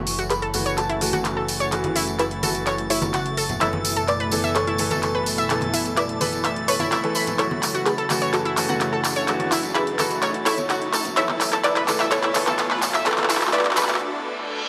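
An overdriven, layered deep house drum kit with handclaps and hi-hat drives this emotional progressive house build-up in F# minor at 127 BPM, alongside jingly tambourine, ringing background congas, a round, warbling analog pluck arpeggio and clear baby grand piano stabs (both filter-swept), a lush supersaw pad also under a sweep, a fat, detuned analog bass, a punchy, wave-folded unison pluck melody through cassette tape and delay, a soft FM synth bell line, a drifting glassy harmonics texture and a very quiet riser and reverse cymbal from 6.5 seconds, all over F#m7 and Asus2/F# chords in a huge ambient reverb until a drum fill gives way to a break at 14.0 seconds.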